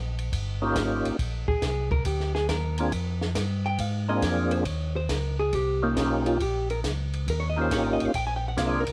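A round, dark tonewheel organ bass with slow rotary swirl opens this greasy, bluesy soul jazz organ trio at a swinging 138 BPM, joined at 0.2 s by a natural-sounding cocktail drum kit with dark cymbals, a high-tuned snare and a punchy kick, then by a fat, lightly overdriven lead organ with key click and percussive bite, and at 1.5 s by a clean, compressed hollow-body electric guitar soloing over Eb7 and Bb7 changes, all in a dry home cassette recording cut from a longer piece.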